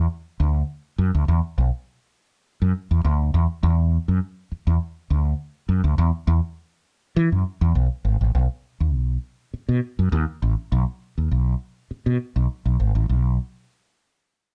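A straight 4/4 groove in common time drives this short funk fragment, cut from a longer piece, with a funky, gritty mood. A mellow fretless electric bass plays entirely alone from 0.0 to 13.4 seconds, ranging from G#1 up to E3. Its tone is dark and round, sitting up front and direct in the mix, with tube saturation adding a gritty edge. The piece moves through three brief sections, the second arriving at 8.3 seconds and a final short passage beginning at 13.1 seconds. A moderate small-room reverb gives the bass a close, intimate space, and the rough home-demo mix keeps the whole thing loose and unpolished.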